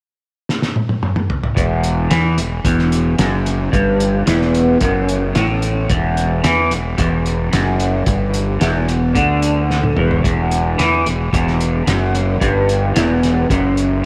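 Mysterious and trippy, this psychedelic rock excerpt opens with a cloth-damped drum kit rolling through a fill at 0.5 seconds, its fat snare and tight kick sounding muffled and gritty up front. At 1.6 seconds a twangy, clean electric guitar enters with a low riff on an E minor chord, flanged and double-tracked, alongside a fingered electric bass thick with overdriven fuzz. Another brief drum fill arrives at 9.7 seconds, and the whole dreamy mix is soaked in a huge ambient reverb.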